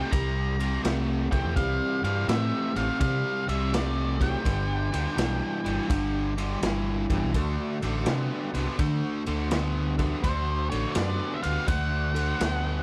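Blues rock in a power-trio vein with a southern rock lean, this short, gritty cut drives along at 83 BPM in 4/4 with a swung eighth-note feel, moving through C, G and D. A dark octave-fuzz lead guitar carries the melody in a fairly high register, while a biting, double-tracked overdriven guitar sits up front playing the riff in a low register. Beside it, an amped, punchy fingered bass with its own overdrive anchors the bottom end. A raw garage drum kit with a boomy kick, medium-tuned snare and ride cymbal sounds saturated and rolled-off on top, breathing in a small, pumping room. From 1.3 seconds a thick, overdriven tonewheel organ holds sustained chords in the background through chorus vibrato and a slow rotary speaker, adding a brief fill at 8.8 seconds. The overall mix is dry, with little reverb.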